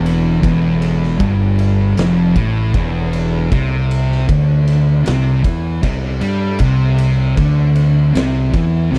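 Set in a small, close room, this short cut from a longer stoner and doom metal piece feels ominous and heavy. Two thick, picked fuzz guitars grind through a riff moving from Em to C5 at 3.5 seconds, one dark and set back in the background, the other warmer and more forward. Beneath them a growly, overdriven fingered bass sits bright and direct, while an oversized low-tuned acoustic kit enters at 0.1 seconds with punchy kick, fat snare and murky ride cymbal, its gritty, saturated sound pumping within a bright stone room.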